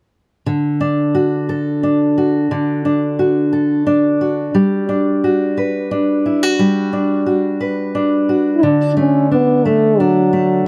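A fingerpicked steel-string acoustic guitar with a dark, woody, old-strings tone opens this swaying, tender six-eight pop ballad excerpt up front in light reverb, moving from D to Gmaj7 before a mellow French horn, distant and roomy with a light vibrato in classical style, takes the melody at 8.6 seconds as the chords return to D.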